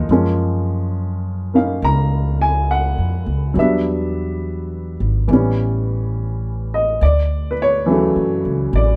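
Romantic and late-night, this slow jazz ballad excerpt at 69 BPM sways with a swung 4/4 feel as a boxy, short-sustained upright piano and a woody pizzicato upright bass play up front together from start to finish in a lightly reverberant room, moving from F#maj7 through Em7 and A7 to Dmaj7.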